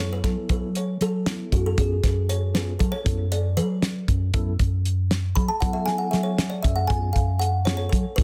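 A woody, thumb-plucked kalimba takes the solo in this tense, intricate progressive instrumental in 5/8, its short, airy notes carried on plate reverb and tape echo. Up front sit a dark, round hollow-body electric bass and a dry 70s kit of hi-hat, fat snare and tight kick with a rolled-off top, the drums entering at 0.2 s. A mellow, clean tine electric piano with plate reverb stays in the background over F#m7 and C#7/F# harmony, all within a dense, heavily limited modern master.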